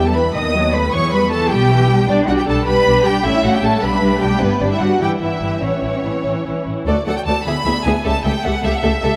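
From the first moment, a full string orchestra sounds together in this cheerful, graceful classical-period movement in 6/8 at 103 BPM with a rubato feel: a clear violin section carries the melody above a second violin line of close, expressive richness, while smooth, distant violas, a warm cello section and an intense, smooth-topped double bass section fill out the accompaniment and bass, all bowed with vibrato and bathed in a vast, echoing cathedral reverb as the passage turns to a new idea at 6.9 seconds.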